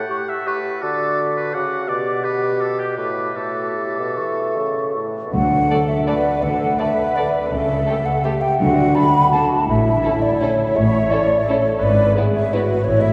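In a flexible, rubato triple metre, this elegant, festive classical excerpt opens with clear oboe, warm bassoon, smooth-topped clarinet and an airy, hollow flute held up front throughout, then from 5.3 s gives way to veiled cello and lush double bass sections and background timpani struck with hard mallets, joined at 5.7 s by a dark con sordino viola section and two muted violin sections, one carrying a soft-edged melody in the background and the other very quiet and distant, set in a long cathedral reverb.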